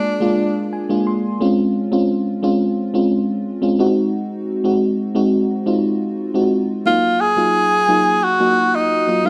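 A bright tenor saxophone and an FM electric piano layered with a soft pad open this nostalgic, moody pop excerpt together at a straight 88 BPM in Eb dorian. The saxophone states a brief, punchy phrase with light vibrato and scooped notes, then drops out at 0.7 seconds, while the electric piano plays a fill from 0.4 to 1.4 seconds. The lush, dreamy keyboard carries on, its dark, chorused tone sitting up front over a harmony that moves from Bb7 through Dbmaj7 and Ab7. At 6.9 seconds the chords settle on Ebmadd9 and the saxophone returns, forceful and up front with a digital delay trailing its notes. A small, wet room reverb gives the whole passage a close, intimate space.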